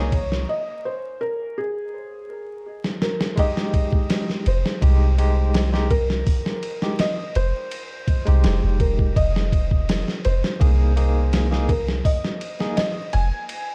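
Trip hop at 83 BPM in F minor, this hypnotic, smoky excerpt has a felt-muted upright piano carrying a mellow, intimate melody with tape echo over a barky, lightly overdriven tine electric piano with tremolo and echo, a deep, round 808-style bass up front, and a gritty 12-bit sampler-style drum kit with a thumpy kick and fat snare, with a break from 0.5 to 3.4 seconds closed by a drum fill from 2.8 seconds, set in a dark production flecked with vinyl crackle and lossy compression artefacts.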